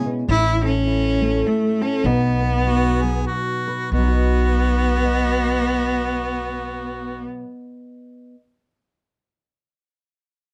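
A rich, bowed cello with focused vibrato carries the melody up front in this nostalgic, gentle acoustic folk fragment, set in a swung 3/4 at 92-104 BPM in B mixolydian and slowing down from 0.3 to 3.9 seconds. A harmonica with light vibrato and a smooth top plays a quieter second line, while a dark, fingerpicked steel-string guitar, with finger squeaks, provides the accompaniment until 8.4 seconds. A woody, thumpy pizzicato upright bass enters at 0.3 seconds, all within light reverb and a dark, warm production.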